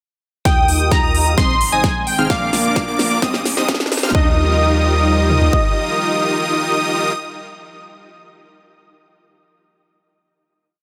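An uplifting, triumphant festival progressive house piece opens at 0.5 s with a build: a punchy kick with toms, crisp hats and a huge snare play under a saturated sub bass, while a dense, compressed supersaw riff moves through a filter sweep. Above it, a bold arpeggiated lead doubles the chords an octave higher, and a catchy, mellow plucky lead carries the melody with lush chorus and delay. A thick pad with a slow attack settles into the background at 1.3 s, and sidechain pumping moves the pad, bass, supersaw and arpeggio lead, while a very quiet riser marks the transition. The hats and snare drop out at 4.2 s as the leads, pad and supersaw land on a final Ebadd9 chord in light reverb, with the kick and bass falling away shortly after.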